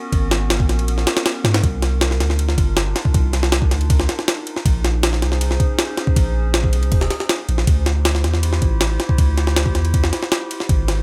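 Drum and bass in a jungle style at 159 BPM, this raw, dark clip from a longer piece rides on a gritty, compressed sampler-style drum kit pitched up, with a thumpy kick, high-tuned snare and ride cymbal sitting up front in a studio reverb. A deep, sine-based 808-style bass holds long, decaying notes with tube saturation, also placed up front, while a warbling, detuned lo-fi pad with chorus and 12-bit sampler grit sustains nostalgic chords underneath. The harmony moves through Abm11, Cm11, Bbm11 and Dm11 inside a digital ambience, all tuned slightly flat of standard pitch.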